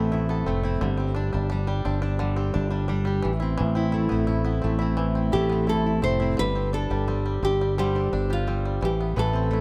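A close, detailed and nearly dry recording carries this wistful, reflective acoustic pop fragment, where a full-bodied fingerpicked steel-string acoustic guitar and a punchy, up-front fingered electric bass anchor the Amadd9 and Gsus4 chords, a twangy, percussive bluegrass banjo adds arpeggios, and a classical nylon-string guitar enters with the melody at 5.3 seconds.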